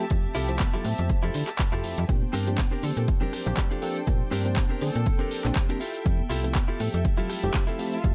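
A small room ambience frames this funky, feel-good filtered disco house excerpt at 121 BPM in F major with a 16th-note swing, where a punchy, tape-warm electronic kick and snappy, metallic-edged FM slap bass sit up front, an analog drum machine supplies handclaps, hi-hat and rim click, and soft-handed tambourine and congas sit in the background, all but the kick carrying sidechain pumping, while a reedy electric piano with phaser, biting bowed violin chords with light vibrato, and a clean, compressed direct-recorded guitar riff with 12-bit sampler grit move through Fmaj9 and Bb69 before a mellow, tight jazz-style horn section enters with the melody at 2.8 seconds.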